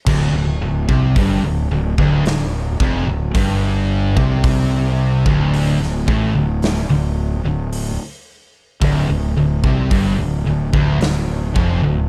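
Stoner and doom metal with a hypnotic, heavy mood, cut from a longer piece, where a double-tracked high-gain guitar riff is joined by two very quiet, dark fuzz guitars also playing the riff, a growly, overdriven fuzz bass played with fingers and placed up front, and a punchy acoustic rock kit with crash, hi-hat, kick and snare in a bright stone room, all held on one D minor chord in a dark production with light studio reverb.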